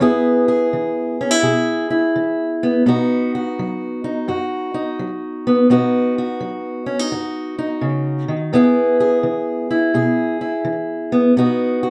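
A fingerpicked steel-string parlour guitar with dark, woody, boxy old strings carries this laid-back, soulful blues alone for the whole 11.9 seconds, swinging at 85 BPM in E major between E and B chords, sitting up front under close, detailed microphones with slapback echo and a moderate booth ambience.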